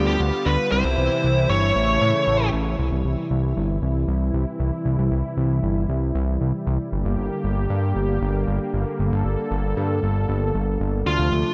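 Bright 1980s-style digital production bathed in moderate plate reverb frames this cinematic, nostalgic synthwave excerpt, where a smooth overdriven electric lead guitar with digital delay carries the melody until 2.5 seconds and returns at 11.1 seconds, over a detuned sawtooth analog pad with chorus and a soft attack sustaining chords throughout, while a fat, thick analog bass with a filter sweep and fast attack holds the low end.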